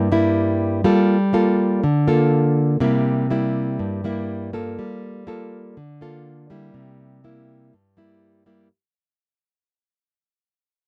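A fingerpicked nylon-string guitar plays alone from the first moment, opening on a rootless C7 before settling into a Gm9 at 0.8 seconds. This short bossa nova cut from a longer piece moves at a relaxed, breezy 122 BPM in a straight 4/4 feel. The guitar's tone is warm and full-bodied with the fresh sound of new strings, and small finger squeaks come through as it sits up front in the mix, reaching from G2 up to A4. The harmony rocks between Gm9 and C7 every two seconds or so. Light reverb gives a touch of air to an otherwise dry, close recording in a 1970s studio style, and the whole 8.7-second passage fades out.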